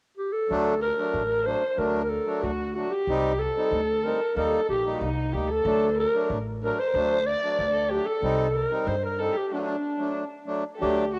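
A growling clarinet leads this soulful, bittersweet klezmer fragment, its raspy, gritty tone close-miked and up front, with scooped notes, a soft attack and a jazz-inflected vibrato. Beneath it, an accordion supplies reedy, single-reed accompaniment in dry tuning, sounding clear and full with a slight cassette-tape colour. An upright bass plucks gut strings with a thumpy, woody bottom. From 0.8 seconds a dark violin, a lone bowed player set at a distance and also touched by tape, traces a quiet second line alongside the melody. The straight two-beat feel moves through a moody cycle of D, C minor and E-flat chords, with a short break arriving at 9.5 seconds. Light reverb and a small-room ambience frame this homespun cassette recording, which is cut from a longer piece.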